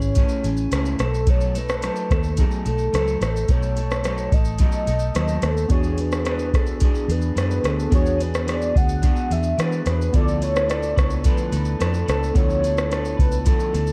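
A dark, warm production with light reverb frames this short excerpt of sunny, dreamy indie and bedroom pop, moving at 108 BPM in a straight 4/4. A soft vintage rhythm box sits up front, its deep kick, metallic hi-hats, rim click and shaker roughened by overdrive and heard as if re-recorded in a large room. Alongside it, a muted fingered electric bass gives a round, foam-muted, amped tone, while an electric guitar through a small old amp adds slightly broken-up, twangy picked accompaniment, bathed in lush chorus and a warbly pitch drift. A velvety, smooth synth lead carries the melody with vibrato, subtle chorus and analog delay. From 5.7 seconds, nostalgic lo-fi synth keys join in the background, mellow and detuned with a cassette-tape wobble, as the harmony moves from Amaj7 and B7 through E7 to a closing Dm6 at 10.1 seconds.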